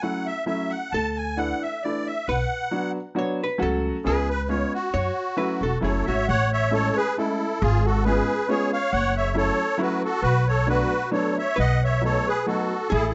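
In 3/4 at 135 BPM, with lightly swung eighth notes and a rubato pulse, this musette waltz in F# minor feels whirling and nostalgic, cut from a longer piece. The reedy musette accordion carries the melody up front, its wet, shimmering tuning set in a plate reverb. A clear upright piano with audible action noise plays an intimate, polished accompaniment, and a thumpy pizzicato upright bass on gut strings enters at 0.9 seconds with a woody low end. Also from 0.9 seconds, a clean, picked hollow-body archtop guitar adds a dark electric second line, falls away at 6.3 seconds as the harmony moves to Amaj7, and returns near the close on B7. A moderate studio reverb frames the group, and the top end is rolled off.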